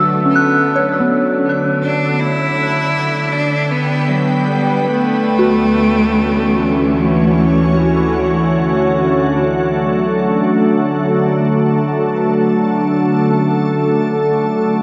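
Drifting in free time, this weightless ambient fragment sets a bright, biting bowed cello melody with vibrato that fades in and falls away at 7.6 seconds over a pure, up-front organ-like pad of sustained chords and gentle FM bell arpeggios shimmering with chorus, phaser and tape echo, while a very quiet detuned organ-like drone enters at 9.4 seconds, all bathed in a dreamy cathedral reverb.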